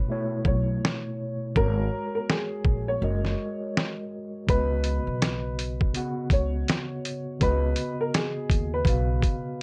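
Swung sixteenths at 82 BPM in 4/4 drive this dreamy, mellow lo-fi hip hop fragment. From 0.4 s a compressed, pitched-down, muffled sampler-style kit with vintage 12-bit grit, a thumpy kick and a medium-tuned snare sits up front, while a woody, growly pizzicato upright bass holds the low end. A clean, filtered tine electric piano with cassette-tape colour plays suspended ninth chords, and a dark, worn, slightly detuned upright piano with audible action noise and short sustain carries an intimate melody, all in light reverb.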